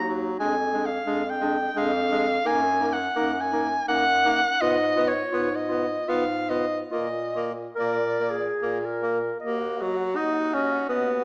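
Heard through a small-speaker sound with a moderate scoring-stage reverb, this brief cut from a longer piece is a lyrical classical work for single-reed quartet in Eb minor, elegiac and melancholic in mood. It moves in a rubato 3/4 that drifts between 69 and 91 BPM. A clear soprano saxophone, up front and sung with vibrato, carries the melody. Beneath it, a mellow clarinet with a smooth top traces a second line, while a warm tenor saxophone, also forward in the mix, supplies the accompaniment. A mellow bass clarinet anchors the low register, and all four voices sound together from the start to the close at 11.2 seconds. Diminished harmonies give way to a Bb chord before the music settles onto Eb minor as a new section opens at 9.4 seconds.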